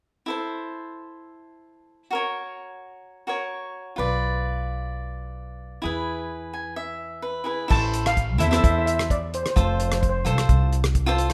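A tense, driving calypso fragment opens with a bright, crisp picked cavaquinho up front that plays alone and adds a fill, joined at 4.0 s by a woody, growly pizzicato upright bass, before a shimmering, airy steel pan melody and a dry, damped drum kit with dark cymbals and a tight kick both enter at 7.7 s, all set in light reverb.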